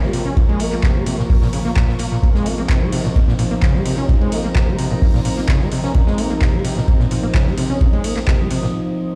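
A straight 4/4 pulse at 129 BPM drives this raw, gritty acid house excerpt in Bb minor, anchored by a dry, deep electronic kick that sits up front from 0.4 seconds. Around it, a booming analog drum machine adds handclaps and metallic hats, while an open jazz kit of hi-hat, ride and a medium-tuned snare with dark cymbals sits in the background in its own small-room sound. An overdriven acid bass carries the riff: a squelchy, resonant sawtooth with a fast, plucked filter attack, thickened by tube saturation, distortion, chorus and delay, and pumping with sidechain. Above it, a thick, detuned unison pad holds sustained chords with a slow attack and long release, also pumping. Higher up, a bright granular cloud pad forms an evolving, blurred haze. The mix sounds as though played on a big sound system in a bare room, and the bass and jazz kit stop at 8.7 seconds for a brief break while the lush pad lingers until 9.2 seconds.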